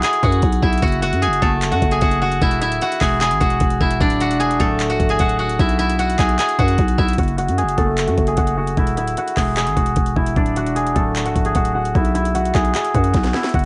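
Trap-flavored hip hop with a hard-hitting, melancholic mood, this short excerpt cut from a longer piece rides a half-time feel as an up-front steel-string zither, played with fingerpicks, carries the melody in a silvery, ringing voice dulled by a low-pass filter and cassette tape coloring. Beneath it, a growling, buzzy 808-style bass with a fast attack and decaying tail anchors a cycle of B5, F#m, E and D, while an electronic trap kit supplies a knocking kick, sharp snare, handclaps and metallic hi-hats, capped by a drum fill at 13.1 seconds. The home cassette recording is dry and dark on top, with the melody sitting forward over the low end.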